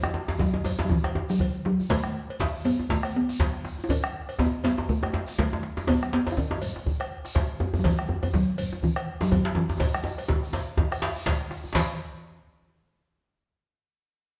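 West African traditional drum ensemble music, earthy and festive, moving at 122 BPM in 4/4 with a swung sixteenth-note feel, cut from a longer piece. The talking drum carries the melody with a short ring, ranging from E3 to E4, over a round bombo and two djembes: one tight and cracking, compressed and saturated up front, the other medium-tuned with soft hands and very quiet. Bright, thin-skinned congas sit damped in the background, while a grainy, mellow shekere enters at 0.3 seconds from a distance and a metallic cowbell joins at 0.7 seconds. The tempo speeds up across the passage, and a drum fill from 9.8 to 11.8 seconds leads into a new section. The band plays live in one room, wrapped in a wet large studio reverb.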